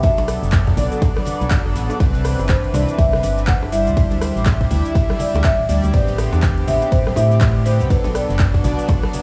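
Swung sixteenths at 122 BPM drive this deep, warm deep house excerpt, where an overdriven kick sits up front beneath a metallic-hatted house kit of claps, ride, rim clicks and shaker, a very quiet, gritty breakbeat kit with a dark snare, and bright hand-struck congas and bongos that join at 0.2 s in the background, while a hollow, organ-like FM bass pumps beneath glossy chorused polysynth stabs with analog delay and tape colour, a nostalgic, warbling lo-fi pad with 12-bit sampler grit holds chords from Bm7 through Cmaj9, D9sus4 and Am11, and a woody, round marimba played with soft mallets carries the melody through echoing delay, all set in a dry, gritty hardware sound with studio ambience.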